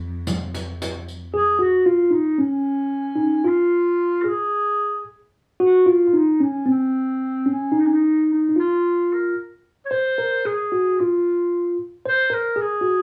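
A small, slightly distant room with a moderate reverb frames this hypnotic, longing excerpt of a Turkish makam ensemble in F makam kurdi at 112 BPM, where a soft-bowed, sul tasto cello drone on F2 and a riq's bright jingles open briefly before a mellow, clean tine electric piano takes the melody up front at 1.3 s, joined at 1.4 s by a breathy, subtone clarinet with light vibrato playing a vintage, jazz-style second line.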